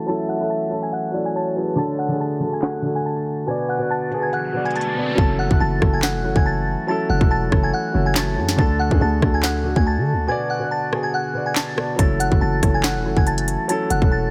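An up-front drill drum kit drives this tense, dark hip hop excerpt at 141 BPM in F# minor, playing a half-time feel in 4/4 with a hard-clipped kick, sharp snare, crisp hi-hats, rim clicks and handclaps. Above it, a glassy, crystalline FM synth bell with a warbling, vintage character and chorus carries the high melody, while a dark, mellow concert grand piano with deep bass plays the accompaniment. A pipe organ on its principal stop holds smooth sustained chords in a baroque voicing, with a touch of chiff. A soft, hollow, woody clarinet-like synth lead, colored by chorus, phaser, digital delay and vibrato, adds a second line until 4.3 s, while a filter sweep shapes the opening and an electronic riser leads into a new section at 5.2 s. There a growling, buzzy 808-style bass enters up front, the hi-hats drop out until 12.0 s, and a short break passes over the Bm chord before the progression returns to F#m7, all set in light reverb and digital ambience.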